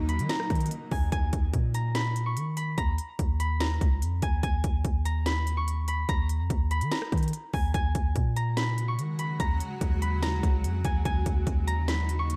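A deep, up-front 808-style bass with long sustained notes anchors this brooding, melancholic half-time trap excerpt, beneath a mellow, ringing fingerpicked concert harp melody carried on tape echo, an electronic drum kit with a hard-clipped kick, sharp snare, crisp hats and rim clicks that enters at 0.1 seconds, and a cloudy, detuned granular pad that sounds briefly at the start and returns at 8.8 seconds, all set in a lightly reverberant space.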